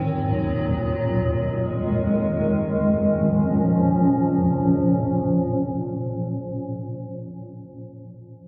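A lush, moderate hall reverb surrounds this brief, melancholic and eerie hip hop fragment, cut from a longer piece. A single granular cloud pad sits up front, holding sustained chords from Eb2 to Db4 with a slow attack and long release; its tone is blurred and wave-folded, with its own built-in reverb and a low-pass filter. A filter sweep shapes the pad until 2.7 seconds, where the harmony moves from Ebm and Fm7 to Bbm, and the pad sustains until 6.5 seconds.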